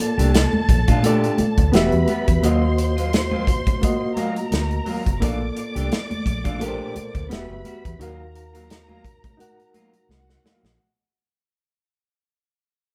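Lush 1970s-style soul with a smooth, romantic mood and a gently swung 16th-note feel, cut from a longer piece and fading out across its 10.8 seconds over Bbmaj7, Emadd9 and Ebmadd9 chords. A punchy, up-front studio drum kit and a round, foam-muted fingered bass anchor the groove, while a reedy electric piano with fast tremolo comps, a twangy, slightly broken-up electric guitar picks a riff, and high-tuned congas with thick skins sit in the background. A dark symphonic violin section adds an expressive bowed second line with vibrato, all in a small room with a live-band feel, before a drum fill at 10.1 seconds.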